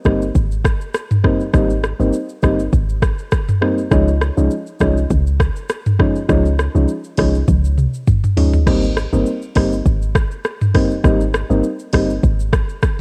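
Dry, tape-tinged home cassette sound frames this breezy, sunny afrobeats excerpt at 101 BPM in Ab major, where soft, warbling electric-piano-like synth keys with chorus move from Abmaj7 to Dbadd9 over a deep, round, dark log drum bass and an up-front, overdriven electronic afro-pop drum kit of kick, metallic hi-hat, rim click, shaker, toms and crash, whose fill from 7.5 seconds leads into a new section at 8.7 seconds.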